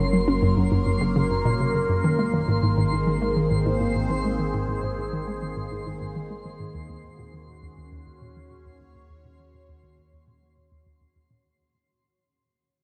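A swirling, evolving sawtooth pad sits up front in this mysterious, hypnotic slice of sequencer-driven ambient space music, its detuned chords drifting through a moving notch of phaser and chorus with slow attacks and long releases. Beneath it, a hollow, bouncy square-wave pluck carries the riff, its detuned tone edged with a noise layer and a quick filter pluck, then thickened by chorus and analog delay while a filter sweep moves across this arpeggio sound. A deep, round sine sub bass holds the low end with mellow, sustained notes. High above, a twinkling granular texture adds sparkling, octave-up FM shimmer bathed in its own reverb. The harmony moves from Gb to Abadd9 at 2.0 seconds and settles on Ebm7 at 6.7 seconds, all within a dark production drenched in a huge, wet reverb with a 9.0-second decay, and the passage, cut from a longer piece, fades out across its whole length.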